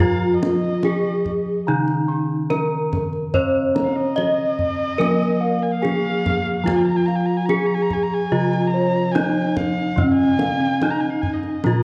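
Javanese gamelan in slendro on Eb, moving at a steady, straight 72 BPM in 4/4, this serene, shimmering passage is cut from a longer piece. A bright bronze metallophone struck with a horn mallet carries the melody up front, its paired tuning producing shimmering beats and its ringing tone trailed by tape echo. A second, lower metallophone supplies ringing accompaniment, while bossed gongs spin arpeggios in the background with a round, dry, close-miked sound and another set of gongs holds the bass in a boxy small-room colour. An intimate bowed erhu traces a second line above, full of vibrato, portamento and an airy bow, and a deep kendang joins at 0.4 seconds. The whole recording sits in a wet recital hall reverb and wears the worn, warbling pitch drift of old cassette tape.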